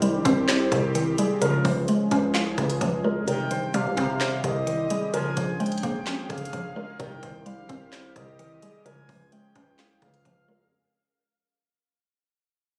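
Hard-hitting and melancholic, this half-time trap excerpt at 129 BPM in C phrygian sets a woody, warbling mallet-like synth pluck and an airy, evolving pad with chorus over a growling, buzzy 808-style bass and a trap kit of knocking kick, crisp hats, handclaps, rim click and woody snare, while a dark, intimate grand piano with audible action noise and analog delay carries the melody from 0.3 s, a smooth brass ensemble adds stabs, and a breathy flute-like synth lead with tremolo and vibrato enters at 3.3 s, all over Cm, Db and Bbm7 chords with the kick briefly muted and the whole piece fading out from the start.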